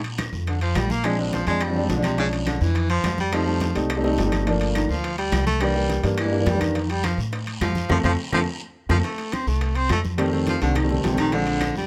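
Close, detailed microphones and a light reverb give this lively, danceable Afro-Cuban jazz a clear, present sound, cut from a longer piece and moving at a brisk 210 BPM in 4/4 with a straight feel in F mixolydian. A dark, woody upright bass is up front, played pizzicato on steel strings with a thumpy attack. Around it sits a full percussion section: close, dry congas with a thick skin and hard hands; very quiet, round, low-tuned bongos played with soft hands; ringing metal-shell timbales, compressed and saturated; woody, distant claves; and a raspy guiro. The baritone saxophone enters at 0.5 seconds and takes the solo, jazz-styled with vibrato and a roomy, distant tone that still sits up front. The baby grand piano joins at 1.0 seconds as a natural, warm accompaniment over chords moving from Bb7 through Bdim7, F7, Gm7 and C7 to F. Drum fills punctuate the groove, and a band accent starting at 7.9 seconds sets up the return of the opening section.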